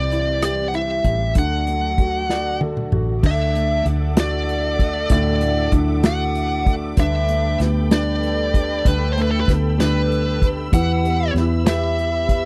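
Swaying and heartfelt, this cut from a longer six-eight pop ballad moves at 64 BPM, counted in dotted quarters, in a dry, close 1970s-style studio sound. A bright, high-gain distorted lead guitar carries the melody up front, while a grand piano with audible action noise and short sustain supplies accompaniment and a studio string section holds sustained chords with soft attack, vibrato and a smooth, sul tasto top. Anchoring the low end, a foam-muted, round, dark electric bass sits up front beside an airy acoustic drum kit played with bundle sticks, with a punchy kick, medium-tuned snare, rim click, toms, hi-hat and dark crash cymbals. A drum fill from 2.3 to 3.2 seconds leads into a new section, where a full-bodied, fingerpicked jumbo steel-string acoustic guitar enters in the background with arpeggios. The harmony moves from C and D to Dadd9, Gadd9/D and finally Em.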